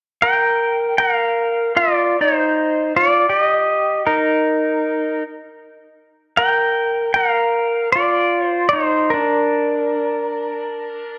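A relaxed swing on the eighth notes rolls along at 78 BPM in 4/4, giving this Hawaiian excerpt in Bb major an easy, unhurried sway. The mood is dreamy and sunny, carried entirely by a solo electric pedal steel guitar that plays from 0.2 to 11.2 seconds, sitting up front in the mix. Its tone is clean and warm with a compressed polish, played with fingerpicks, gliding on the slide and blooming through volume swells, while a slapback echo trails each phrase. The harmony drifts from Bb to Eb, pauses on an unaccompanied moment, then moves through Dm7 before settling back on Bb. A moderate echo chamber reverb with a long tail surrounds the guitar, lending the short passage a soft, floating glow.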